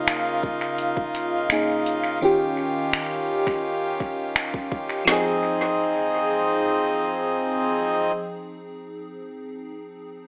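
Longing and moody, this short contemporary R&B fragment in 4/4 settles into a straight, unhurried groove, cut from a longer piece. An FM electric piano layered with a soft pad carries the accompaniment, its lush, dreamy tone colored by chorus and phaser, with a mellow, detuned edge and a noise layer beneath. A hand-pumped harmonium holds reedy, breathing chords alongside it, its sustain pulsing with sidechain pumping until it drops out at 8.1 seconds. The electronic drum kit sits up front only until 5.2 seconds, pairing finger snaps and metallic hats with a soft kick and woody snare, all trailed by analog delay. The harmony drifts from Db69 to Eb9 and then lands on Fm7, while a wet spring reverb and an echo-heavy, AM-radio sound give the whole a hazy, distant character.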